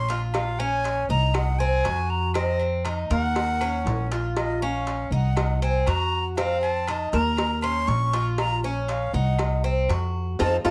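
A breathy, close-miked flute sings a nostalgic melody over bright, metallic picked arpeggios from the Cuban tres and a woody, thumpy pizzicato upright bass up front, opening this danceable Cuban son and guajira cut in Bb minor at 119 BPM. Ringing agogo bells and timbales sit in the background alongside a tight, high-tuned vintage cowbell, as the harmony cycles through Bbm7, Cdim, F5 and Ebm7 under light reverb. The band lands a shared accent at 10.4 seconds before this brief fragment of a longer piece cuts off.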